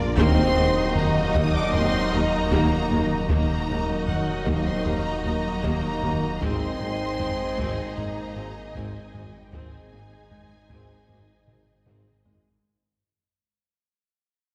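Heard from further back on a scoring stage with a wet reverb, this vast, relentless excerpt of a hybrid orchestral and electronic film score moves at 77 BPM in a straight 4/4. It shifts from Eb minor to Ab at 6.4 seconds as the passage fades out. A distant violin section carries the high melody over a soft-edged second violin line, focused violas, mellow French horns and a warbly, lo-fi tape-like pad with chorus. Very quiet cellos and double basses, a roomy tuba, a round analog bass riff and a snarling, growling distorted saw bass fill the low end, while solo taiko drums struck with heavy sticks sit in the background, opening with a fill and closing with another from 11.5 seconds.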